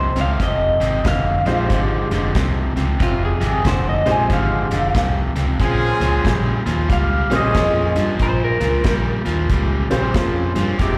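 A smoky live-gig sound, heard through the venue's PA and carried by recital hall reverb, opens this brooding electric blues shuffle excerpt, moving from Fm9 to Bbm9 at 5.6 seconds. A slightly broken-up, lo-fi electric guitar through a small old amp carries the melody with phaser, slapback and tape echo until 9.1 seconds, over an up-front overdriven guitar riff, a round, dark fingered bass and an acoustic country drum kit with a tight kick. A detuned, jangly upright piano joins at 1.5 seconds, and a bright horn section with light vibrato adds jazz-style stabs from 5.6 seconds.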